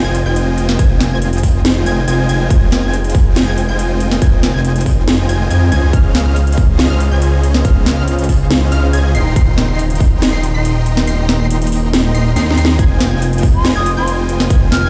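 Heard through a big sound system in a bare room with a large studio reverb, this bittersweet, emotional future bass cut moves at 140 BPM in a half-time feel in F minor, drifting from Fm9 through Dbmaj7 and Cm7/Eb before returning to Fm9. A thick, chorused detuned saw bass sits up front with a punchy, tape-warm electronic kick, while a trap kit with a sharp snare and overdriven metallic hats adds grit, and huge supersaw chords with delay pump alongside a lush unison pluck arpeggiating in the background. A very quiet, ethereal shimmering pad sustains underneath. The kick drops out at 11.1 s and returns at 12.8 s after a drum fill, and an airy silver concert flute enters at 13.5 s with tape echo, sounding distant.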